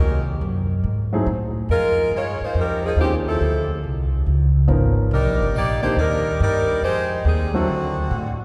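Bathed in the long, wet reverb of a church or concert hall, this brassy, joyful fragment of big band swing sets a clear, loose saxophone section carrying the vibrato-laden melody up front over a woody, growly pizzicato upright bass, while a polished grand piano joins at 1.1 s with short-sustained accompaniment through rich jazz chords.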